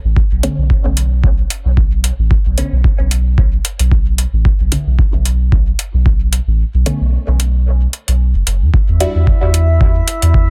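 A round, soft sub bass sits up front with sidechain pumping, joined by an overdriven, deep electronic kick and metallic, overdriven hi-hats in this hazy, deep dub techno excerpt cut from a longer piece. A muted, detuned sawtooth chord stab sits underneath, darkened by phaser, a moving notch, sidechain pumping and dub echo, while the kick drops out from 6.6 to 8.7 seconds. At 9.0 seconds a calm, glassy sine texture of drifting overtones enters with chorus and its own reverb, all within a dense, heavily limited modern master.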